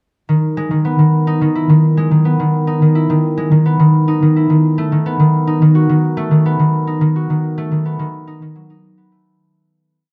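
This folktronica piece has a playful, warm mood and moves at 107 BPM in a straight 4/4. A solo concert harp carries the whole piece from 0.3 seconds, fingerpicked and ringing, sitting up front in the mix and staying between D#3 and F#4. Its arpeggiated sequence runs as a 10-step loop that drifts against the bar, which gives the steady groove a gently shifting, off-kilter feel. The harmony moves from Emaj7 to B7/D# at 4.8 seconds, and the recording fades out between 6.3 and 9.3 seconds. A wet studio reverb and a dark production surround the harp's acoustic tone.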